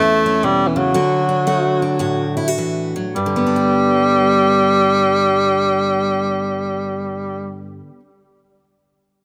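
Close, detailed microphones and a light reverb give this short country excerpt an intimate, heartfelt, down-home sound, with a swung feel that slows down over the first 3.2 seconds. A clear tenor saxophone carries the melody up front in a jazz-style solo, shaping its low notes with vibrato and scooped attacks until it stops at 7.7 seconds. Beneath it, a full-bodied, picked dreadnought acoustic guitar supplies the accompaniment, moving from A to D and settling on G as the second section begins.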